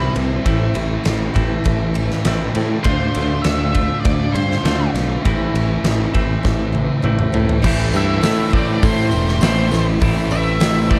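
Dark, warm production in a small room gives this brooding, melancholic shoegaze and dream pop excerpt, in A minor at 100 BPM, a close, heavy glow, as a growly, punchy bright bass and a huge arena drum kit with a fat snare and punchy kick sit up front, the drums entering at 0.2 seconds. Behind them, a thick fuzz guitar with ensemble chorus and a biting overdriven guitar with reverse reverb grind out riffs, while a very quiet, shimmering, octave-doubled twelve-string acoustic picks boxy arpeggios and an octave-fuzz lead guitar with digital delay sings a melody over Am and Dm7. After a drum fill at 6.4 seconds, a second double-tracked, very quiet overdriven guitar riff and a jingly tambourine join at 7.6 seconds.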